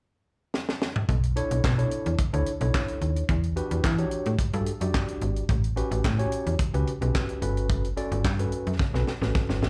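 Early-eighties boogie funk in B minor at 109 BPM, slick and funky, caught as a live gig through the venue's PA with a touch of club reverb. A dry, mid-forward drum kit with a high-tuned snare, tight kick, toms, hi-hat and handclaps opens with a fill at 0.5 seconds. At 1.1 seconds a snappy, digital FM bass with a metallic, fast attack and decaying notes joins, followed at 1.4 seconds by a clean tine electric piano with slapback echo, over Bm11, Em9, A13 and Gmaj9#11 chords, before another drum fill at 8.8 seconds.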